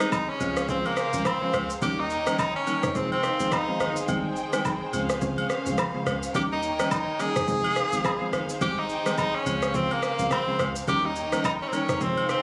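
Afrobeats with a breezy, sunny mood and a swung sixteenth-note feel, cut from a longer piece. An edgy, forceful tenor saxophone carries the melody up front in a jazz-style solo, with vibrato, scooped notes and a tape echo trailing its phrases. Round electric-piano-like synth keys with chorus and a filter sweep comp beneath it, while a lush bowed string section holds smooth, even chords over a cycling Dbmaj7, Eb7, Fm7, Abmaj7 progression. An electronic afro-pop kit of deep kick, rim click and shaker is overdriven and re-recorded in a small room, joined by acoustic agogo bells and woodblock. A punchy sine sub bass with a pitch-drop attack enters at 0.4 s, and the whole clip sounds captured on a phone in the room, with club reverb.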